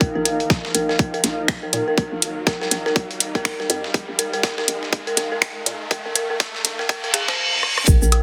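Hypnotic and clinical, this minimal techno excerpt at 122 BPM in 4/4 with a swung 16th feel is an eight-second build-up over a Bbsus4 chord, tuned to A4 = 435 Hz. An eerie, inharmonic detuned synth bell riff with chorus, digital delay and sidechain pumping undergoes a filter sweep, while a hollow, bouncy FM bass pumps beneath and a cloudy granular pad blurs into its own reverb. A tight, up-front electronic kick and a layered garage kit of finger snaps, hats and rim clicks, with soft clipping on the snare, drive the groove over a gritty background sampler-style kit with filtered hats and snare. A riser climbing from the opening and a reverse cymbal at 6.9 seconds lead to a drum fill, then a grainy egg shaker at 7.9 seconds and a tape-toned woodblock at 8.1 seconds close the dense, heavily limited mix.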